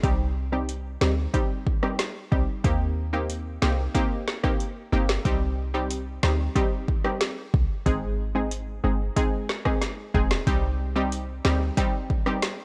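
Dancehall with a sultry, tough mood, cut from a longer piece: an overdriven afro-pop drum kit with a deep kick, woody snare, metallic hats and vintage 12-bit sampler grit plays alongside a punchy, sine-based 808-style bass and a round, detuned sawtooth analog pluck with chorus and a filter sweep, all kept dry and up front over a Cm, Eb6 and Ab progression, with the bass dropping out at 11.7 seconds.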